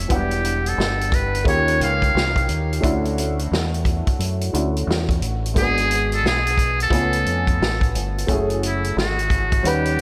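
A dark, woody upright piano with analog chorus and a round, punchy dub electric bass open this cool, smoky jazz-hop excerpt at 88 BPM in F# minor, joined at 0.1 s by a punchy vintage drum kit and a buzzy, breathy metal-muted trumpet with delay that steps forward for a whispered solo at 8.3 s, all within a dreamy, plate-reverb-soaked mix over chords moving from Em9 to F#m9.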